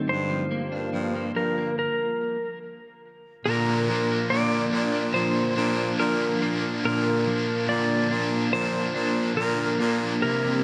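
A clean lap steel guitar sits up front with a slide melody and volume swells, its tape echo trailing over a blissful, dreamy dream pop excerpt in a straight 4/4. Beneath it, a breathy, whispered baritone saxophone carries the bass line, a picked, compressed electric guitar plays arpeggios through ensemble chorus and tape echo, and a warbling, detuned, lo-fi pad holds mellow sustained chords in the background. After a stop from 1.8 to 3.5 seconds, a bright, overdriven stack guitar enters with harmonic tremolo and lush chorus, all set in a moderate scoring-stage reverb.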